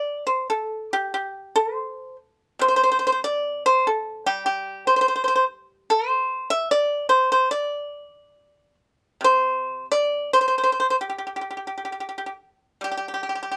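Pastoral and serene, this short excerpt of Chinese traditional music features a solo pipa unfolding in a free, rubato feel across its 13.6 seconds. Played with fingerpicks, the pipa sounds bright, percussive and dry, sitting up front in a close, detailed recording with little room reverb.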